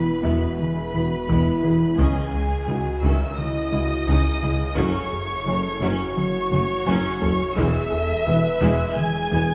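A very quiet taiko ensemble struck with hard sticks sounds through this brooding, vast cut from a hybrid orchestral and electronic film score in straight 4/4, with a drum fill between 6.5 and 7.6 seconds as the harmony moves from E through C#madd9 and F#m back to E. Lush bowed violins carry the melody over a focused second violin line, while violas, a close chamber cello section and very quiet double basses fill in beneath, mellow French horns hold sustained chords and a dark tuba anchors the low end. Electronic layers thicken the bed: a rubbery, hollow square-wave bass riff, a menacing, beating detuned saw bass, squelchy resonant blip-pluck arpeggios with phaser, and a felt-muted upright piano with audible action noise and digital delay, set within a wet scoring-stage reverb.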